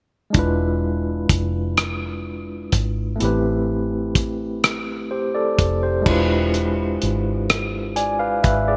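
A slow, straight six-eight pulse carries this yearning, late-night R&B excerpt, where a cloth-damped, thuddy drum kit plays crash, hi-hat, tight kick and rim clicks with muffled, dark cymbals and a gated reverb. A barky tine electric piano, lightly overdriven through a combo amp with a fast tremolo, sits up front and moves from E7b9 to Am9 and back to E7b9 at 6.1 seconds, over a round, foam-muted fingered electric bass. A moderate plate reverb and bright 1980s-style digital production frame the whole.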